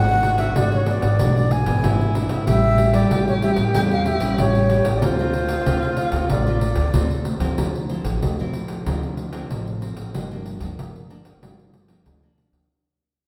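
An airy, wooden baroque flute with crisp attack carries the melody in this bittersweet, nostalgic samba-and-choro excerpt in D minor at 94 BPM, shadowed by a breathy, whispered tenor saxophone with scooped notes and vibrato until both stop near 7.3 seconds. A full-bodied, fingerpicked nylon-string guitar with audible finger squeak, a woody, growly pizzicato upright bass and a jingly, softly handled pandeiro carry on through the fade-out that begins at 7.6 seconds, as the harmony moves from E7/G# and A7 to Dm9 and Gm7. A wet recital-hall reverb gives the recording a spacious, churchlike bloom.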